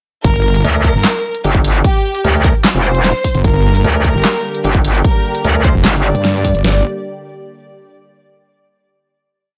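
Heavy wobble dubstep in G minor at 150 BPM with a half-time feel, this aggressive piece opens at 0.2 seconds straight into a drop. Two up-front wobble basses drive it: a detuned, saturated sawtooth-and-sine bass with chorus and overdrive, and a brighter, metallic FM bass that enters at 0.6 seconds and answers it, both shifting their wobble speed. They sit over a layered electronic drum kit with a punchy kick and deep snare, plus an overdriven layer of huge snare, claps, hi-hats and shaker in a small room. A dark, woody violin section with vibrato repeats a riff through tape echo, and a lush, warbling unison pad with sidechain pumping joins in the background at 3.4 seconds before a final chord.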